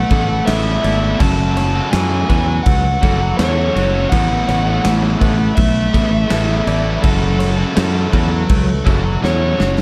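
A bright, double-tracked fuzz guitar riff drives this cinematic, hopeful post-rock passage, joined by a growly, punchy fingered bass up front, a big roomy rock kit with bright cymbals that ends on a fill at 9.2 seconds, an overdriven lead guitar melody trailed by tape echo, quiet twangy and twelve-string guitar arpeggios (the latter bathed in spring reverb), and a deep, moody detuned synth pad sustaining Asus2 and F#m7 chords beneath a dark studio reverb.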